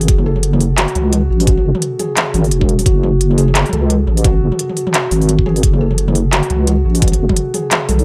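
Swung half-time drum and bass at 173 BPM in 4/4, this spacious, heavy excerpt tuned to A4 = 443 Hz rests on an F#5 chord. Up front, a layered, knocking electronic kick enters at 0.1 s and stops at 7.4 s, beside an overdriven electronic kit of handclaps, smooth hi-hats and toms re-recorded in a small room. A deep, dark, detuned wobble bass with chorus sits between E1 and C#2, while a mellow, felt-muted upright piano plays intimate arpeggios from F#4 to A4, its action noise audible through tape echo, all within a light reverb.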